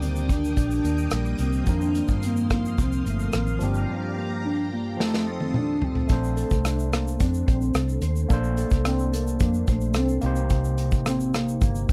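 From the first beat, a warbling, detuned synth lead with phaser and tape echo carries a nostalgic melody. Around it sit a mellow, compressed electric guitar in the background, a barky, overdriven tine electric piano through a combo amp, a round, foam-muted fingered bass and an acoustic drum kit with a punchy kick, played with bundle sticks, all captured in a dry, close 1970s-style studio sound. This laid-back, dreamy indie bedroom pop moves at 109 BPM in a straight 4/4 in Bb major, with a lush, phased string machine sustaining chords until a drum fill at 5.0 seconds leads into a new section at 6.1 seconds, where the strings drop out and the harmony settles onto rich seventh and ninth chords in this cut from a longer piece.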